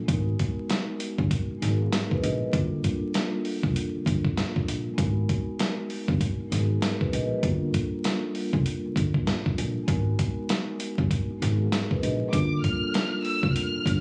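Captured on a phone in a dry studio room with a layer of vinyl crackle, this tough, moody boom-bap hip-hop excerpt swings over a gritty, compressed sampler-style drum kit with a thumpy kick and a medium-tuned snare. A woody, dark pizzicato upright bass sits low while a mellow, ringing vibraphone played with soft mallets and a slow motor vibrato sits up front, filtered at both ends, as the harmony alternates between Abm9 and Gm9. At 12.3 s, a close, expressive bowed violin section enters high with vibrato and portamento, carrying the melody through to the cut at 14.0 s.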